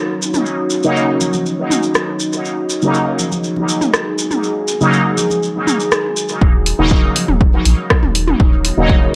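Deep and hypnotic, this dub techno excerpt in Eb minor moves at 121 BPM in a straight 4/4, opening on an Ebm7 chord from a dark, detuned sawtooth ambient pad with chorus, built-in reverb, sidechain pumping and a filter sweep running from 0.0 to 6.4 seconds. Grainy maracas and overdriven, layered electronic toms and congas with dub echo join almost at once. A bright, juicy, resonant polysynth plays stabs through chorus, phaser and cassette tape colouring, and a punchy, tape-warm analog drum machine adds hi-hat and rim click from 2.0 seconds. At 6.4 seconds a round, soft sub bass and an up-front punchy electronic kick arrive, all captured in a dry, gritty hardware recording with light reverb.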